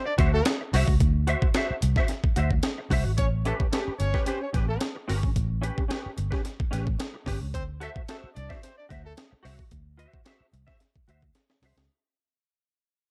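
Energetic funk at 110 BPM in 4/4 with a straight feel, moving between D9 and A9 chords as the whole excerpt fades out. A gritty, compressed, pitched-up breakbeat kit with a thumpy kick and high-tuned snare sits up front beside a dark, round, foam-muted fingered bass. A clean semi-hollow guitar with ensemble chorus provides accompaniment, a tight, warm horn section with light vibrato and a smooth top carries the second line until 9.1 s, and a drum fill at 11.4 s closes the passage inside a digital ambience.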